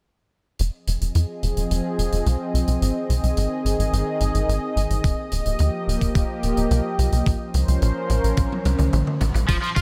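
Synthwave in F minor at 108 BPM, nostalgic and moody, cut from a longer piece. A punchy, wave-folded sequencer bass carries a filter sweep, and an acoustic big-band kit plays crash, hi-hat and toms through gated reverb, with a drum fill from 8.4 seconds. A lush, detuned unison pad with chorus sustains Fm7, Ab, Ebadd9 and Bbmadd9, pumping with the bass under sidechain. A thumpy, overdriven electronic kick arrives at 5.0 seconds, and a bright, double-tracked stack guitar bursts in at 9.5 seconds with overdrive and analog chorus, all set in a light reverb and a gleaming 1980s-style digital production.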